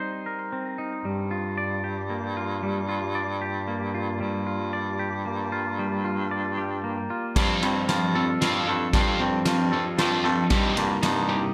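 Brooding and melancholic, this post-rock passage in G minor at 114 BPM in 3/4 opens with a twangy, clean electric guitar picking delay-touched arpeggios, joined at 1.1 seconds by a raspy, gritty baritone saxophone holding a low G bass line with vibrato and scooped notes, until at 7.4 seconds a bright, overdriven, double-tracked guitar riff and a loose acoustic drum kit with dark cymbals, a fat snare and a punchy kick launch a fill-driven build-up over shifting F/G and Cm7/G harmony, all set in a recital-hall reverb.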